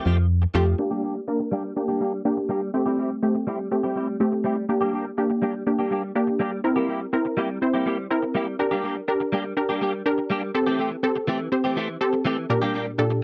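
A bright, compressed clean electric guitar riff with ensemble chorus and a low-pass filter opens this energetic, bittersweet pop fragment, soon joined by a lush, detuned unison pluck carrying the accompaniment, while a punchy, round FM bass sounds only briefly from 0.1 to 0.7 s before a build-up with a filter sweep runs from 0.8 s to the close, set in a dry, intimate 1970s-style studio sound with light reverb.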